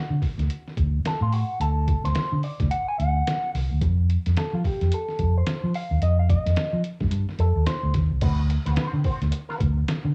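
This funk excerpt has the character of a home cassette recording, set in a small room ambience. It has a strutting, energetic feel and a swung sixteenth-note groove. Up front, a vintage muted fingered electric bass sounds dark, round and amped, paired with a trip hop sampler-style drum kit that is compressed, pitched down and muffled. The kit's thumpy kick, medium-tuned snare, hi-hat and crash carry their own tape coloring. An electric guitar with an envelope filter and wah plays bright, twangy, picked accompaniment, while a clean electric guitar solo runs from the opening until 8.2 seconds. The harmony moves from D7 to F5, then settles on D6 when a new section arrives at 8.2 seconds.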